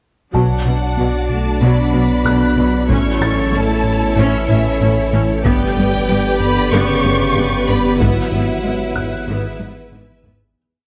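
Close, detailed microphones in a moderate concert hall give this tense, futuristic hybrid orchestral and electronic film piece a polished depth, with most parts entering together over Bm, A, G and Eadd9/G# chords. A studio violin section carries an expressive melody with portamento and a symphonic violin section plays a lush second line. Violas drive an ostinato while very quiet cellos and double basses sit beneath, dark French horns double the tune at the octave, distant trombones hold background chords, and a rubbery square bass pulses beside a saturated sub bass and hard-stick taiko drums. An ethereal pad with phaser arrives at 1.6 s, a felt-muted upright piano adds sparse single notes through delay, and the piece fades out from 8.0 s into a drum fill at 9.6 s.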